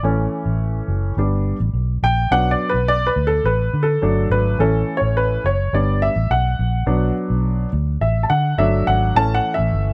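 A woody, slightly detuned upright piano leads this short cut from a longer piece of uptempo 1960s-style soul, carrying the music from 0.0 to 9.9 seconds with a present, long-sustaining tone that sits up front. At 105 BPM in a straight 4/4, the mood is driving and passionate, built on a cycling progression of A, G, Bm and D that returns to A near the close. Beneath the piano, a vintage muted electric bass played with the fingers supplies a dark, round, amped low end, its foam-muted sound also placed up front in the mix. The two instruments play throughout, the piano ranging from E3 to A5 and the bass from F#1 to D3. Light reverb and a small room ambience surround the recording.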